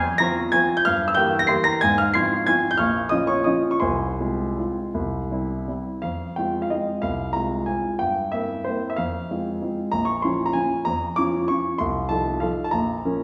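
A wet recital-hall reverb with a 1.5 second decay surrounds a solo grand piano that sits up front, its tone polished and present with a short sustain. This nostalgic, bittersweet classical waltz in F minor moves in 3/4 with a rubato feel between 155 and 201 BPM, tuned to A4 = 436 Hz, and spans from Bb1 up to C7. Cut from a longer piece, it opens on Fm and passes through Bbm and a closing C before a second section begins at 6.0 s, leaning on C7/G and F7/C and settling on Bbm by 13.2 s.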